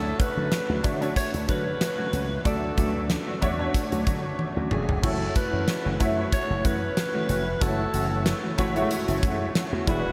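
A dramatic, nostalgic slice of 1980s-style pop in F# minor at 93 BPM opens with a growling, raspy alto saxophone carrying the melody at a distance through analog delay, over an up-front concert grand piano with audible action noise and ensemble chorus, a dark, clean electric guitar riff tucked in the background with chorus and delay, and punchy slap bass through an envelope filter, while a huge arena drum kit with a fat snare and bright cymbals enters at 0.2 s and plays a fill at 4.4 s as the chords move from Dmaj7 to F#m7, all bathed in a dreamy, reverb-soaked mix.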